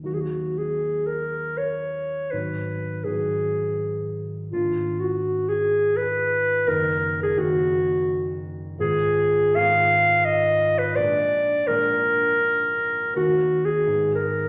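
Set in a reverberant recital hall, this yearning, solemn romantic classical fragment in triple metre with flexible rubato features a dark, smooth-topped clarinet singing the melody up front over a mellow concert grand piano whose deep bass anchors the accompaniment.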